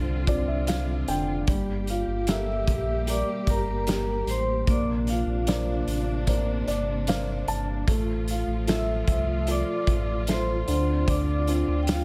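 A straight 4/4 pulse at 75 BPM carries this hopeful, heartfelt pop ballad in F major, cut from a longer piece, with a loose acoustic indie drum kit joining at 0.3 seconds, its tight kick, medium-tuned snare and hi-hat sitting up front in a pumping small room. Underneath, a deep sine sub bass with an added octave holds sustained, fast-attacking notes, full and forward in the mix. A felt-muted upright piano plays soft, intimate accompaniment thick with felt, its action noise audible, and it adds fills at the very start and again around 6.3 seconds. A lush studio string section sustains bowed ensemble chords with vibrato and a smooth, even top. From 1.9 seconds a dark, ringing vibraphone played with medium hard mallets carries the melody, its metallic tone shimmering with medium motor vibrato and trailed by digital delay, as the harmony moves from Dm7 through Gmadd9, Bbadd9 and Fmaj7/A before returning to Dm7, all wrapped in a small room ambience.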